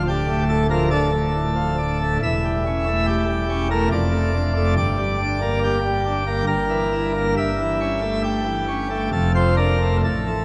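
A pipe organ on full plenum, its mixtures bright and brilliant with a baroque voicing and audible chiff, plays alone and up front through this solemn, dark classical chorale fragment of a longer piece, spanning from a deep D1 to E5. The piece moves at about 69 BPM in 3/4 with uneven, rubato beats, tracing a D minor progression through A7/E, Gm and Edim/G before settling on Dm/F at 9.1 seconds. A long church reverb surrounds the organ, and a worn, warbling cassette-tape quality adds a wavering pitch drift.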